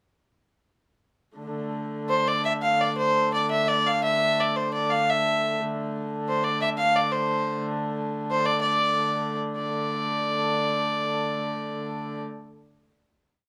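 A medieval dance in a straight 6/8, mysterious and driving, played as a complete short piece by a small band performing live together in one room. A rich, boxy hurdy-gurdy opens at 1.4 seconds with a smooth, even drone, its wheel-bowed, keyed sound carrying a nasal edge. At 2.1 seconds a single fiddle enters up front with a modal melody laced with ornaments, its gut-string tone reedy and nasal and sitting clearly above the drone. The tempo pushes steadily faster from 1.4 to 11.4 seconds, heightening its restless drive, and the players settle onto a final chord from 9.6 seconds. A small, reverberant room gives the pair an intimate, close-up presence.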